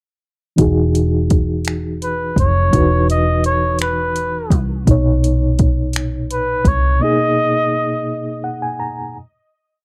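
Intimate and tender, this short slow six-eight R&B piece sets a mellow reed electric piano with fast tremolo holding spread chords over a dark, round muted fingered electric bass full of slides and chromatic approach notes and a drum kit of finger snaps, metallic hi-hat and soft kick, while from 2.0 s a lightly vibrato flugelhorn with tape echo sings scooped, motif-based call phrases, and the piano closes with a short fill from 8.1 s, ending alone, the whole captured in a dry, close 1970s-style studio sound.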